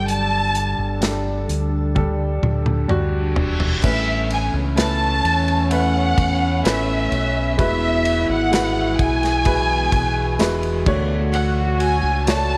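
A heartfelt pop ballad in A major at a slow 64 BPM, this excerpt sets a dark, lush violin section with vibrato and portamento up front over intimate concert grand piano, a glassy, ethereal FM pad, a round, punchy fingered electric bass and a natural small-room drum kit whose fill and electronic reverse cymbal lead at 3.8 seconds into a passage where a mellow vintage French horn section adds a second line and a jingly tambourine joins faintly, all moving through Gsus2, Aadd9, Eadd9 and Dmaj7 in a moderate echo-chamber reverb.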